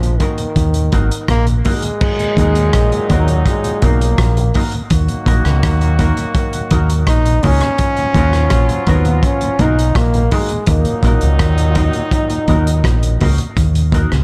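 Laid-back and meditative, this roots reggae excerpt at 83 BPM in Eb minor rests on a deep, round fingered electric bass sitting up front and a crunchy, saturated breakbeat drum kit with a punchy kick, dark cymbals, hi-hat and rim click, while a mellow tonewheel organ with slow rotary swirl hums very quietly beneath. A bright, present trombone carries the melody with light vibrato and dub echo, joined at 2.0 seconds by a clear, vintage horn section playing a second line in octave doubling. In the background, a twangy, scooped electric guitar through an envelope filter adds lush chorus and echo to a studio mix drenched in reverb.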